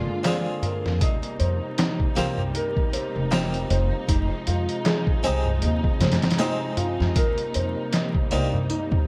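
A compressed, pitched-down sampler-style drum kit with a thumpy kick sits up front in this dark, hypnotic trip hop excerpt, alongside woody pizzicato upright bass, a felt-muted upright piano playing mellow arpeggios through digital delay with audible action noise, a brilliant harpsichord accompaniment with tremolo and tape echo, a crisp metal-shell darbuka in the background, and distant bowed strings holding lush sustained chords with vintage 12-bit sampler grit, over a bed of vinyl crackle and light studio reverb.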